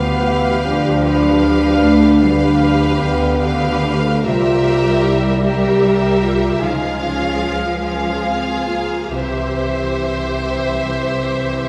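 Heard from further back in a recital hall with a reverberant 1.5-second tail, this slow, romantic orchestral passage, cut from a longer piece, feels yearning and solemn, moving in a rubato 12/8 at roughly 44-53 BPM in dotted quarters, tuned to A4 = 442 Hz. A smooth, even violin section carries the melody high up, while a second violin section adds a rich, soft-edged counterline beneath it, and a viola section fills in the accompaniment with expressive portamento. A dark, tight French horn section holds sustained chords and sits prominently in the blend, as a woody cello section sings in the background and a lush double bass section anchors the low end, also sliding with portamento. A very quiet concert harp, thumb-plucked, rings out arpeggios across a broad span. The harmony drifts from G7 over D to C7, then to D-flat, and settles on C by 9.1 seconds.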